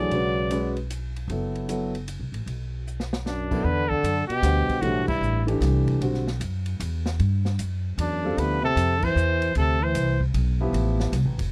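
A swung 3/4 pulse carries this hypnotic, spiritual modal jazz excerpt, where a clear trumpet with vibrato states the melody over a breathy, whispered trombone second line in brief phrases that return at 3.3 and 8.0 seconds, while a woody pizzicato upright bass and an up-front concert grand piano with long sustain hold the accompaniment alongside an open drum kit with dark cymbals and a boomy kick that plays a fill at 2.9 seconds, with band accents punctuating a dry, close 1970s-style studio sound.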